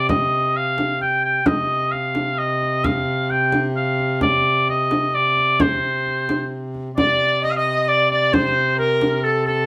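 A clear, up-front shawm carries a folk-style melody with vibrato over a ringing, bowed viola da gamba drone with gut-string bite, while a close, dry frame drum struck with hard hands keeps a medieval dance in triple time. The mood is ancient and mysterious, and the players sound as if gathered live in one room with moderate reverb. At 7.0 seconds a bright, reedy tenor recorder with an airy chiff adds a second line until the cut at 9.7 seconds.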